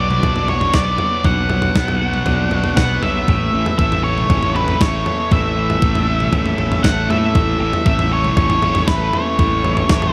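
A straight 4/4 pulse at 118 BPM drives this short indie rock excerpt, cut from a longer piece, with a carefree, jangly mood. A crisp 8-bit digital drum machine enters at 0.1 seconds, its sampler-style thumpy kick, fat snare and toms bathed in gated reverb and re-recorded in a small room. Beneath it, a fuzz-laden fingered bass sits dark and round, overdriven through both direct and amped signals. A double-tracked distorted electric guitar picks a bright riff, while an octave-fuzz lead guitar, dusky and up front, carries the melody over the top. The harmony moves from Bm to A at 3.3 seconds, and a moderate plate reverb frames the bright, 1980s-style digital production.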